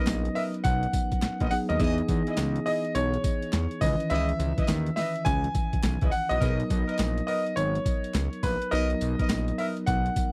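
Flirty and upbeat, this short new jack swing cut from a longer R&B piece moves at 104 BPM in 4/4 with a 16th-note swing, sitting in B major. A clear, polished baby grand piano carries the melody up front, while a tine electric piano, heard through its built-in speakers, supplies clean accompaniment beneath it. A horn section with light vibrato and a smooth top adds jazz-style stabs colored by tape echo, and a fat, detuned analog bass with a wave-folded sawtooth edge and a filter sweep holds down the low end. The sampler-style boom bap kit of kick, snare, hi-hat and tambourine sounds gritty and overdriven, with a thumpy kick and a medium-tuned snare, and a very quiet, hollow group handclap adds to the rhythm. The chords move from Bmaj7 to Emaj7 at 1.8 seconds, to C#m9 at 3.8 seconds and back to Bmaj7, all captured as a dry, close 1970s-style studio recording.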